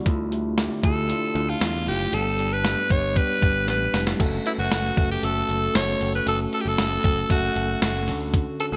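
Nostalgic and romantic, this 1980s-style pop excerpt places a raspy, gritty alto saxophone melody with light vibrato and delay up front from 0.8 s, over a mellow tine electric piano heard through its built-in speakers, a punchy picked electric bass, and a thumpy, sampler-style 12-bit drum machine with gated reverb whose fill at 3.7 s leads into the second section, all set in plate reverb and bright digital production.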